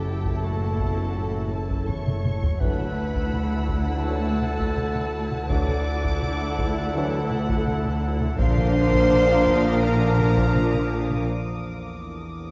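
A clear, soft-attacked solo clarinet threads through this mysterious, uneasy suspense film cue, set against lush bowed violin sections carrying an expressive melody and a focused high second line, with a third violin texture joining at 2.6 seconds, a distant viola section with portamento, dark French horns and very quiet trombones holding sustained chords, smooth cellos and rich double basses underneath, a warbling, detuned analog drone, and background taiko struck with heavy sticks, including a fill at 1.9 seconds, in a vast, echoing cathedral space before a break at 11.3 seconds.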